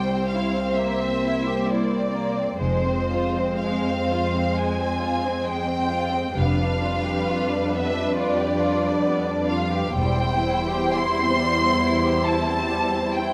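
Muted violins, violas and cellos open together in a slow, rubato romantic movement for string orchestra in C major at 56-71 BPM, with the up-front first violins carrying a lyrical, veiled melody with vibrato while second violins shade a lower line and the violas fill in a lush accompaniment. The smooth-topped cellos hold the bass with light vibrato, and a dark double bass section joins beneath them from 2.6 s to 10.9 s as the harmony moves from C through F minor to G7 over F and settles on C over E. Close, detailed microphones and a moderate scoring-stage reverb frame the warm, con sordino sound of this short excerpt from a longer piece.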